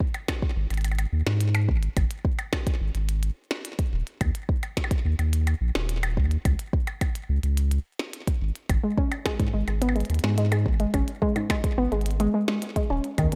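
This IDM excerpt has a glitchy, eerie mood over a straight 4/4 pulse. A deep electronic kick sits up front from the start, joined by a glitchy kit of tiny snare, clicky hi-hats and percussion blips, set in studio reverb and scattered with digital delay. A round, sustained sine sub bass enters at 0.6 seconds and sits up front beneath a digital ambience. The harmony moves through G#5, D#5 and C#5 chords before falling away at 8.7 seconds. At 8.8 seconds a warbling, lo-fi pluck arrives with arpeggios, its detuned sawtooth and triangle tones roughened by a noise layer and ring modulation, then softened by chorus and delay into a mellow, short-decaying sound.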